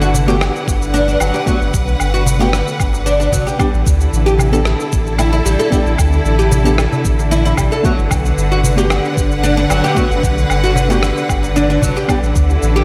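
A dreamy, reverb-soaked hall sound frames this earthy, warm organic downtempo excerpt at 113 BPM, where a clear, bowed studio string section holds lush sustained chords over a round sine sub bass, both breathing with sidechain pumping as the harmony moves between Gmaj7 and A7sus4. A bright, woody plectrum-plucked oud plays arpeggios through a diffuse ambient delay, while a clean tine electric piano sits in the background with its own delay and pumping. A gritty, thumpy sampler-style kick enters at 0.7 seconds, joining the compressed cabasa, rim click and woodblock already in motion, and a crisp metal-shell darbuka plays close and dry further back.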